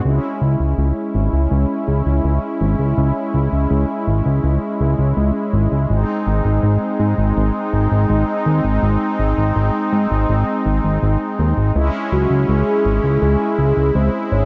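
A fat, saturated analog bass sits up front from 0.1 s in this nostalgic, driving synthwave passage at 82 BPM in C# harmonic minor, beneath a brassy, nasal analog pad holding sustained chorused chords as the harmony moves from C#m to G# and back. A velvety synth lead joins at 12.1 s with chorus, tremolo and tape echo, and the whole passage is set in a moderate concert-hall reverb with a dark, warm production.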